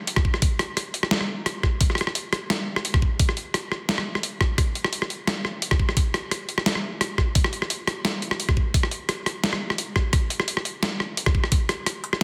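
A lush hall reverb and a dense, heavily limited master frame this tense, dark drum and bass passage, a short cut from a longer piece that moves in a half-time feel. A gritty, pitched-down, sampler-style kit of hi-hat, rim click and a medium-tuned snare with soft clipping sits up front from 0.1 seconds, compressed and tape-warm. Alongside it, a layered, knocking electronic kick, re-recorded in a small room and also up front, enters at 0.2 seconds and stops at 11.6 seconds.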